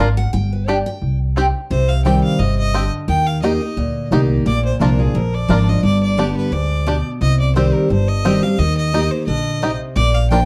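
This excerpt from a longer bluegrass piece in C minor opens with a bright, full-bodied picked dreadnought guitar taking a short solo up front, its finger squeak audible, while twangy, percussive fingerpicked banjo arpeggios, thumpy woody upright bass and round mandolin stabs with doubled strings sound beneath it. The tempo is a driving 174 BPM in 4/4 with a light swing on the eighths, and the mood is lonesome. At 1.7 seconds the mandolin has dropped out and a single clear fiddle takes the melody, bowed with light vibrato in a focused, close sound. The harmony then moves through Cm, Eb, Bb and G before circling back. The production is dark, with moderate studio reverb around the acoustic strings, and the pizzicato bass and guitar sit most forward in the blend.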